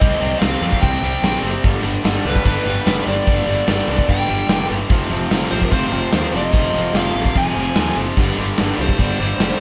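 Driving and menacing, this short hard rock clip at 147 BPM in 4/4 sets a dark, smooth overdriven lead guitar melody over two bright picked rhythm guitars, one overdriven and one high-gain distorted, sitting in the background, while a growly fuzz-laden fingered bass and an up-front gated 80s drum kit with a punchy kick and bright cymbals drive a Cm, G, F5, G5 progression, all captured as a band playing live in one room with light reverb.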